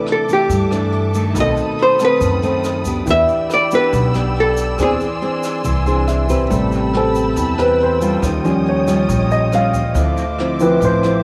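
Bossa nova in A minor at 140 BPM, this intimate, smooth excerpt from a longer piece moves in a straight 4/4 through chords from C69 and B7b9 to Am9, D#9 and Dm9. A dark, clean hollow-body archtop guitar sits up front with a picked melody solo that ends at 4.9 seconds, after which a natural-sounding concert grand piano with audible action noise and deep bass takes a fill and then a solo from 6.5 seconds. Beneath them, a fingerpicked classical nylon-string guitar with finger squeak and a woody, growly pizzicato upright bass carry the accompaniment, while a bowed symphonic string section holds sustained chords with vibrato. A distant, roomy brush drum kit with a boomy kick, hi-hat and rim click stays in the background alongside a grainy, bright egg shaker. Moderate spring reverb gives the whole blend a gentle glow.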